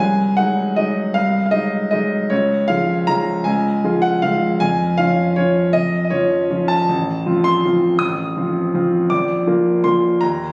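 This is a classical piano waltz in 3/4 at 159 BPM, taken from a longer piece, with a sparkling, graceful mood. A solo grand piano carries everything, its tone warm, smooth and vintage, sitting up front and ranging from A1 to Eb6. The beats fall unevenly, with a rubato feel that lets the dance lilt and stretch. It opens in D-flat major, moving through Ab7/C, Db and Db/F, then turns toward B-flat major at 6.9 s by way of F7/A before settling on Bb at 9.1 s. The sound carries a moderate recital-hall reverb, and the performance was captured on a phone in the room.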